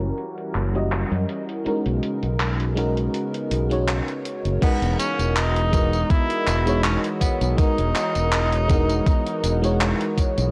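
A clear tenor saxophone carries the melody in this dreamy, nostalgic vaporwave cut from a longer piece, entering at 4.6 seconds with vibrato, scooped notes and a jazz-style solo voice roughened by vintage 12-bit sampler grit and tape echo. Underneath, at a relaxed 81 BPM in 4/4 with a light sixteenth-note swing in E lydian, an FM electric piano layered with a soft pad plays lush, decaying chords through chorus, sampler grit and tape echo, moving from F#7b9 to Bmaj13 and settling on Emaj9#11. A thick, detuned unison pad sits bright but in the background with slow, sustained swells of sound, while a fingered electric bass stays up front with a direct, amped tone. A gated 80s digital drum machine supplies crash cymbal, handclaps, hi-hat and tambourine, with a filter sweep running over the opening section until a thumpy, tape-warm electronic kick joins up front at 4.6 seconds. The whole piece has a dry, gritty hardware sound with a cassette-tape haze and a low-pass filter dulling its top end.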